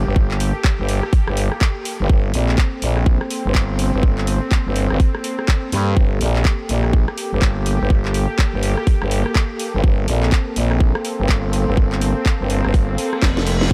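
This bass house excerpt sits on a single G minor add-nine chord and feels aggressive and bouncy, with a swung sixteenth-note groove in four. A growling FM bass, thick and sine-based with a fast attack and overdrive, sits up front and pumps against the tight, layered electronic kick. A house drum kit of handclaps, hi-hat, rim click and a cracking snare sounds tape-warm and roomy behind them. Above, an airy sawtooth pad holds detuned, evolving chords with a noise layer, filter swell, chorus and sidechain pumping, bright and soft in attack with a long release. At 13.0 seconds an electronic reverse cymbal comes in, and a drum fill follows at 13.2 seconds, while light reverb gives the mix a little space.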